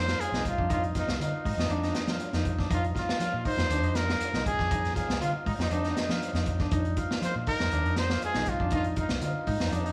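Afrobeat at 120 BPM in F dorian, hypnotic and intense, cut from a longer piece and sitting on a single F7(no3) chord throughout its roughly 10 seconds. A breathy, whispered trumpet carries an intimate solo melody with light vibrato and a soft attack, over ringing fingerpicked Celtic harp arpeggios and a dark, round fingered electric bass. A crunchy breakbeat kit enters at 0.1 s, up front and gritty with a high-tuned snare, tight kick and rolled-off top, while the band plays live together in one room under a large studio reverb.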